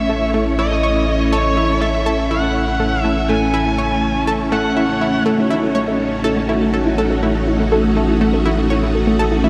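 Soaked in a lush hall reverb, this dreamy fragment of ambient, sequencer-driven space music feels expansive and luminous. A bright, full string machine sits up front with its ensemble chorus, holding sustained chords over a deep, evolving analog bass, while a round sawtooth analog pluck carries a riff through chorus and analog delay. An overdriven electric lead guitar sings the melody with analog delay until 5.2 seconds, and at 5.3 seconds a soft, warbling vintage pluck enters with gentle arpeggios in the background.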